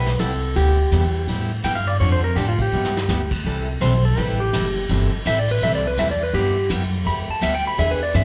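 Country western swing with a cheerful, swinging lilt, this short passage is cut from a longer live performance. A clean, twangy lap steel guitar sits up front with a slide solo and a slapback echo, while a picked steel-string acoustic guitar with a bright, full-bodied dreadnought tone picks out the accompaniment beneath it, also treated with slapback echo. An upright bass, plucked and woody with a thumpy attack, anchors the bottom, and a vintage brush kit with dark cymbals and a punchy kick comes in at 0.1 seconds and adds a short fill from 2.7 to 3.1 seconds. The harmony moves through G6, Dm7 and C6 before settling back on G6. The sound is that of a gig heard through the venue's PA, with club reverb and some lossy compression artefacts.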